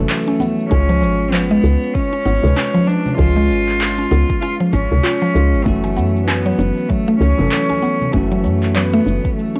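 Organic downtempo at 97 BPM in F# minor, this earthy, hypnotic fragment of a longer piece moves with a swung sixteenth-note feel over F#m7 and C# chords. A dark, bowed cello carries the melody up front, its soft attack and sul tasto tone giving a pure, floating line with a smooth top, colored by cassette tape and analog delay. Beneath it, a bell-like tine electric piano plays clean, direct accompaniment with sidechain pumping, while a mallet-like synth pluck enters at 0.3 seconds with mellow, percussive arpeggios treated with chorus and phaser. A woody FM bass sits up front with a round, dark, decaying tone, and a deep, layered electronic kick drum arrives at 0.7 seconds, joining the electronic handclaps and shaker that enter at 0.1 seconds. Soft-handed congas, compressed and saturated, stay in the background, and the whole is set in light reverb and digital ambience with the lo-fi character of a home cassette recording.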